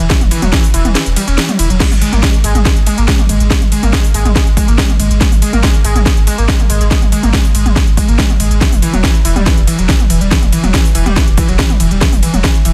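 Dark, industrial peak-time techno driven by a heavy, overdriven electronic kick that drops out from 1.0 to 1.8 seconds before returning, beneath an up-front overdriven kit of cracking snare, smooth hats, ride, crash and toms, a deep, round sine sub bass with tube saturation and a low-pass filter pumping under sidechain, and a screaming, guitar-like sawtooth and square-wave synth riff with distortion, analog chorus, delay and vibrato, all packed into a dense, heavily limited, nearly dry mix.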